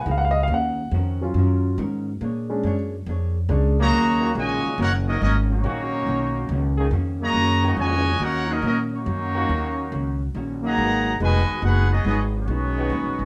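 Swinging and dramatic, this big band jazz passage in Eb minor moves at 140 BPM in 4/4 with a swing feel on the eighth notes, and it is cut from a longer piece. A warm, intimate grand piano takes the opening solo, its action noise audible, before handing off at 3.8 seconds, while a woody, growly upright bass plucks up front and a dark, compressed hollow-body jazz guitar picks clean chords in the background. At 3.8 seconds the bright trumpet section takes the melody with light vibrato and a roomy, distant sheen, joined at once by a close-miked, tight trombone section playing a brilliant second line. From 4.2 seconds a mellow, vintage-toned trombone section adds sustained chords alongside them. The harmony moves from Ebm7 through Bb7#9 and back, reaching Abm7 near the close, all set in a moderate large studio reverb.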